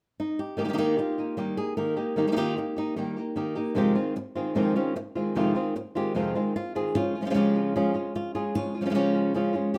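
Intense and fiery, this short excerpt of flamenco in straight 4/4 features two acoustic flamenco guitars with fresh strings, both fingerpicked. An up-front guitar carries the melody from 0.2 seconds, while a second guitar joins at 0.6 seconds with stabs set further back, its finger squeaks audible and its sound bathed in plate reverb. The chords move from Eb to Fm7 to Db in a rough home demo mix with a wet studio reverb.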